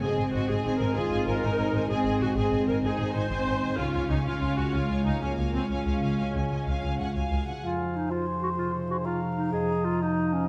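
Soaring and triumphant, this heroic adventure film-score excerpt in Db major moves at 126 BPM in 12/8, with lush bowed violin sections carrying the melody and a second line over rich, up-front violas, smooth cellos and double basses, mellow French horn chords and bright, ringing harp arpeggios, until the strings fall away and at 7.6 seconds a dark cor anglais, an airy, hollow flute and a clarinet take up second lines alongside the horns and harp through to 10.5 seconds.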